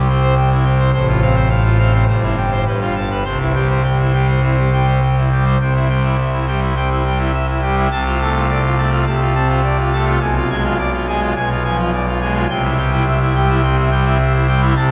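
This classical organ toccata, cut from a longer piece, is majestic and jubilant, set in a steady four-beat metre with a straight feel. A solo pipe organ plays throughout the 14.9 seconds on full organ with mixtures drawn, its brilliant, romantically voiced sound placed up front and spanning from G1 up to A5. The harmony opens on C, moves through F/A and C/G to a G9, and returns home, then darkens with a Dm7 over a C bass at 7.9 seconds and a diminished seventh before resolving back to C. The opening phrase is restated, giving the passage a sense of grand affirmation. A cathedral reverb with a long 4.7-second decay surrounds the organ, capturing the spacious sound of a church or concert hall.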